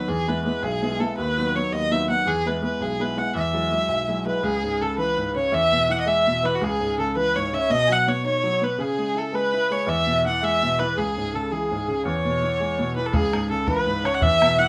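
Rollicking and lively, this Celtic folk jig in E major moves at 110 beats per minute in 6/8, cut from a longer piece. A bowed erhu carries the melody up front, its clear, nasal and earthy tone set slightly distant, with light vibrato and portamento colouring the line. A baby grand piano with a worn, open character and long sustain plays the accompaniment from the start, moving from E and B/D# through C#m, Badd9 and E6. At 4.3 seconds a reedy, round, mellow accordion joins in the background with a close-miked, dry second line. A damped, tight, saturated bodhran enters at 13.1 seconds for the final stretch, and a short, wet studio reverb surrounds the ensemble.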